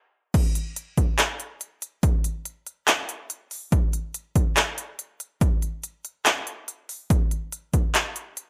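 Future bass with an emotional, dreamy mood, this short cut from a longer piece opens on a brief stop before the drop lands at 0.3 seconds. The groove sits in a half-time feel with a light swing on the sixteenths. An electronic kick drum anchors the beat, punchy, layered and overdriven, placed up front and re-recorded in a large room; it drops out at 7.8 seconds. Alongside it, a big-room dance drum kit supplies crash cymbal, handclaps and crisp hats, also layered, produced and gritty with overdrive, continuing to 8.5 seconds. The overall sound is dry, with little reverb and a high-pass filter thinning the mix.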